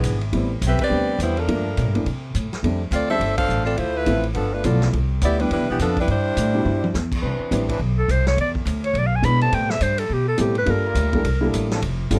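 Energetic and joyful, this fast big band swing cut, taken from a longer piece, opens with a clear, close-miked saxophone section carrying the melody with vibrato, punctuated by band accents at 0.8 and 3.3 seconds. Underneath, a growly, woody upright bass plucks the bass line up front, while a vintage drum kit with dark cymbals, a punchy kick and a rolled-off top drives the swing from a mid-forward position in the mix. A boxy upright piano with short sustain adds accompaniment through rich extended chords, and a drum fill at 6.7 seconds leads into the second half. From 7.2 seconds a clear trombone section holds sustained chords, and at 8.0 seconds a breathy clarinet enters over them, its subtone melody sung with light vibrato. The sound is dry and close, in the manner of a 1970s studio recording.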